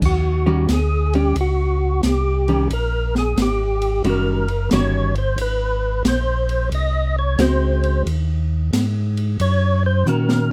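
A close, detailed, nearly dry recording captures this swinging, soulful soul jazz organ trio excerpt at 90 BPM in 4/4, with the chords moving from Eb7#9 to Ab7#9 and Ebm7. A fat, lightly overdriven tonewheel organ with percussive third-harmonic attack, chorus vibrato, key click and slow rotary speaker takes the solo from 0.1 seconds, over a mellow, round second organ voice holding down the bass with its own slow rotary swirl. A dark, clean, compressed hollow-body archtop guitar comps up front, while an acoustic jazz kit with dark cymbals, a high-tuned snare and a boomy kick sits back in a small room and closes with a drum fill at 10.1 seconds.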